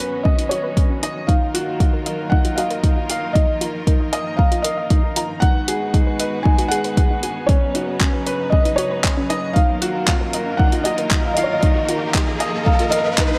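Piano and strings electronica in Eb minor at 116 BPM, this intimate, hypnotic excerpt builds steadily as a felt-muted upright piano carries a mellow, delayed melody over a clear, woody, slightly detuned upright piano riff, a rich bowed string section holding pumping sustained chords, and soft, warbling pluck arpeggios tucked in the background. A tape-colored deep house kit of handclaps and hi-hat runs throughout, joined at 0.3 seconds by a deep, up-front electronic kick. The harmony cycles through Badd9, Ebmadd9, Bbsus4 and Abm7 in a concert hall reverb, and a background riser enters at 9.0 seconds.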